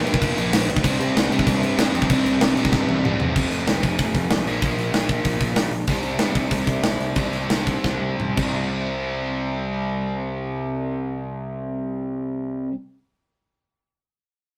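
A rough rehearsal-room sound with tube saturation and light reverb frames this rowdy, rebellious punk rock excerpt, cut from a longer piece. A biting, double-tracked overdriven guitar sits up front playing the riff, while a growly fuzz bass, picked and amped, drives the low end beneath it. The tight metal drum kit has an airy big-room character, with bright cymbals, a medium-tuned snare and a tight kick, and it breaks into fills at the ends of its phrases. From 5.9 seconds the band slows down, and the drums drop out at 8.5 seconds, leaving guitar and bass to carry the final stretch through to the cut.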